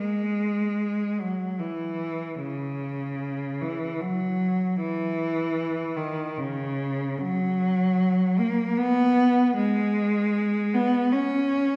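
A wet concert hall reverb with a 2.0-second decay surrounds this recording, which is heard from further back in the room even as the cello itself sits up front. This is a short classical passage for unaccompanied cello, cut from a longer piece, played in free time in C# dorian with the tuning set to A4 = 439 Hz. A single bowed cello carries the whole 11.8 seconds, its tone rich and focused, with a smooth top and vibrato. The line stays within the span from C#3 to C#4. The mood is mournful and yearning, and the free, expressive playing lets each bowed note settle into the hall's long tail.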